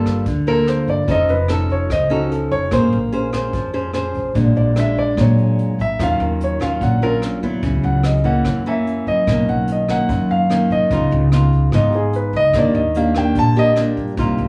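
Bossa nova with a wistful, intimate mood, this excerpt features an open, up-front grand piano with long sustain carrying the melody until 13.7 s over fingerpicked nylon-string guitar with fresh strings, woody, growly pizzicato upright bass, and a dark, smooth brush kit with punchy kick, hi-hat and rim click, all heard as a band playing live in one small room with moderate studio reverb.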